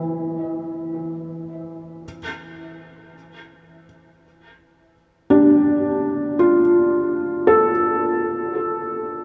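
Ambient excerpt in F major at a slow 55 BPM, where a lone felt-muted upright piano, soft, mellow and intimate with audible action noise and a diffuse ambient delay, sits up front between E3 and E5, moving from C to Fmaj7 at 2.0 seconds within a vast cathedral reverb that gives the serene 9.2-second fragment its echoing depth.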